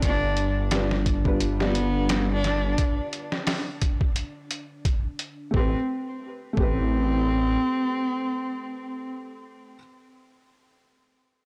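A bowed cello carries the melody up front, its dark, close tone shaped by vibrato and portamento and trailed by tape echo. This hypnotic trip hop fragment, cut from a longer piece, moves in 4/4 with a light swing, shifting from a G7 chord to Am9 at 5.5 seconds. Beneath it, a felt-muted upright piano plays soft, boxy accompaniment with audible action noise, colored by harmonic tremolo and tape echo, while a deep, detuned analog pad with chorus sits in the background until 5.6 seconds. A rumbling sawtooth bass with transformer saturation and a compressed, pitched-down sampler-style drum kit, with a thumpy kick, medium-tuned snare and hi-hat, both stand up front, the drums stopping at 6.8 seconds. The recording is blown-out and overdriven with little reverb, lending the dark mood a raw, saturated edge.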